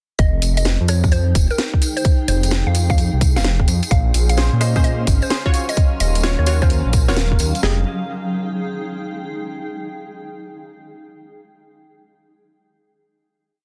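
Moody and skippy, this short two-step garage piece moves at 129 BPM in F phrygian with a swung sixteenth-note feel, cycling from Fm9 through Bbm9 and Ebm9 before settling back on Fm9. Up front, the garage drum kit drives a tight two-step kick and cracking snare, while a second layer of the kit adds bright, skipping swung hats and rim clicks, joined by a jingly, hand-played tambourine in sixteenths. A deep, rumbling detuned saw bass carries a syncopated line with a beating edge, and a woody, mallet-like FM pluck repeats a mellow riff melody coloured by chorus and delay. A cloudy, evolving granular pad drifts in at 1.3 seconds with its own reverb and sidechain pumping, later joined by a very quiet, breathy pad and, from 4.4 seconds, a punchy chord stab riff in close voicing treated with chorus and tape echo. The groove gives way at 7.6 seconds to a final chord carried by the granular pad, all within a dense, heavily limited modern master set in a digital ambience.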